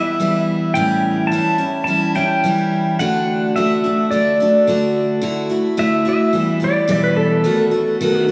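In a straight 4/4 at 108 BPM, this peaceful, gentle acoustic folk passage in D major rests on a picked steel-string dreadnought guitar, full-bodied and up front with audible finger squeak, moving through Em, A7 and D before shifting to Dadd9, Em and B7/D#. Above it, a clean, twangy pedal steel guitar carries the melody with fingerpicks, slide and volume swells, compressed and coloured by analog chorus and delay, then takes a solo from 5.2 seconds. A wet plate reverb with a long 3.8-second tail soaks the mix, giving it a dreamy, floating glow.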